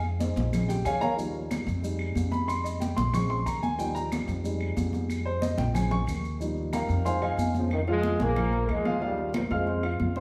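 A dark upright piano takes a solo over the first 7.7 seconds of this danceable, passionate salsa excerpt in F minor, its up-front chords ringing with long sustain as the harmony circles through Fm7, Bbm7 and Ebadd9. The tempo is a brisk 184 BPM in a straight 4/4. Underneath, a growly pizzicato upright bass on steel strings sits close and low, and bright, high-tuned congas struck with hard hands give a compressed, saturated snap. Grainy maracas and woody claves sit far back in the mix. At 7.6 seconds a tight, punchy trombone section enters with the melody in a mellow pop style, tinged with light vibrato and a roomy, distant quality despite sitting up front, as the chords shift to Fm, Bb5 and Ebadd9. A wet, large studio reverb places the whole band further back in the room.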